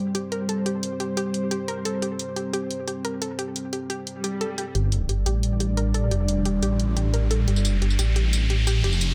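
A deep, moody analog pad with chorus opens this dark technical drum and bass passage at 176 BPM, sustaining a G5 chord while a warbling, lo-fi pluck plays arpeggios through dub echo over layered electronic hi-hat and tambourine. A swell arrives at 4.2 seconds, and at 4.8 seconds a thick, up-front detuned saw bass with tube saturation enters beneath a riser, driving a mechanical, aggressive build-up. Light reverb gives the parts a little space, and the passage is cut from a longer piece.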